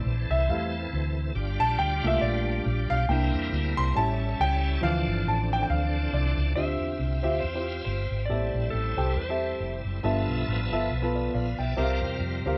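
Gospel at 138 BPM with a swung feel, soulful and jubilant, this cut from a longer piece opens with a worn, up-front baby grand piano solo over a shouting tonewheel organ with key click, slow rotary speaker and chorus vibrato, while a round, punchy hollow-body electric bass anchors chords moving from Fmaj7 through Gm7, C7 and A7 to Dm7. At 6.6 seconds the harmony shifts to richer Dm11, Am7 and G13 colors, and a dark, compressed lap steel guitar adds a brief slide melody with volume swells until 9.8 seconds before the passage settles on C7sus4. The band sounds live in a small room with moderate reverb.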